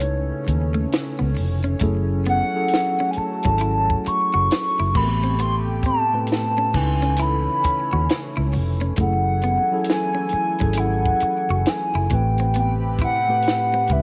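Smooth and sultry, this slow neo-soul R&B passage, cut from a longer piece, sways with a lazy swung sixteenth feel over a cycle of minor ninth chords. A hollow, woody synth lead carries the melody up front in a clarinet-like voice, its soft attack and vibrato coloured by chorus and phaser. Beneath it, a mellow tine electric piano supplies the accompaniment while a clean, picked electric guitar adds a quieter second line through tape echo. A lush, detuned unison pad holds sustained chords low in the mix with its own chorus, and a round, foam-muted vintage bass sits prominently at the bottom. A compact cocktail kit with a tight kick, high-tuned snare and dark cymbals keeps the groove dry and natural, all wrapped in light reverb and a small-room ambience.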